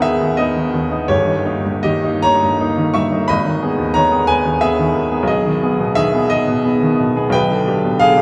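Swaying in 6/8 with a free, rubato pulse of roughly 50-61 BPM counted in dotted quarters, this romantic character piece for solo piano moves at a slow, searching pace in G# minor. The mood is bittersweet yet stormy, a brief passage cut from a longer work that lasts about 8.2 seconds. A baby grand carries everything alone, spanning a deep G1 up to a bright C#6, and its tone is clear, natural and intimate, placed up front so that the soft clicks and thumps of its action are audible. Around it, a cathedral's reverb hangs for a long 5.6 seconds, making the instrument sound as if played in a vast, echoing space. The harmony opens on G#m, leans into D#7/G at 1.1 seconds, returns home, passes through G#m/B, and closes on G/B at 7.3 seconds.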